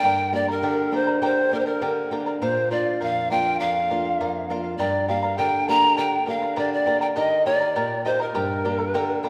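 A straight 2/4 pulse at 101 BPM drives this festive, earthy Andean folk excerpt in G minor: a breathy, woody pan flute sits up front with the melody, its tongued notes showing chiff, vibrato and rolled-off highs, while a bright, shimmering charango with double strings and a warm flamenco guitar with fresh strings and audible finger squeak, both fingerpicked, accompany over Gm, Bb and Eb, the ensemble set in a wet scoring-stage reverb.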